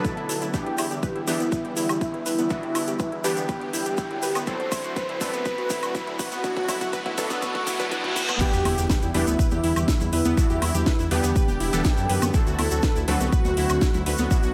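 A moderate concert-hall reverb gives this driving, emotional progressive house passage a spacious sheen, with a punchy electronic kick sitting up front. Over the first 8.4 seconds a build-up unfolds: filter sweeps move across the synths while a background riser and a reverse cymbal gather tension and a house drum kit with a cracking snare, metallic overdriven hats, crash and woodblock plays a fill, with a grainy tube shaker underneath. At 8.4 seconds the drop lands on an impact. A thick, bold unison lead with vibrato and lush chorus carries the melody, shadowed higher up by a soft, dreamy second line, while a breathy pad holds sustained chords and a round, evolving analog pluck spins arpeggios. Background supersaw stabs add bite, and a deep, rumbling detuned saw bass, tube-saturated and dark, anchors the low end, with sidechain pumping breathing through the bass, pad, pluck, stabs and leads. 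Very quiet, close congas and bongos slip in at 8.7 seconds as the harmony cycles through minor-seventh and dominant-seventh chords.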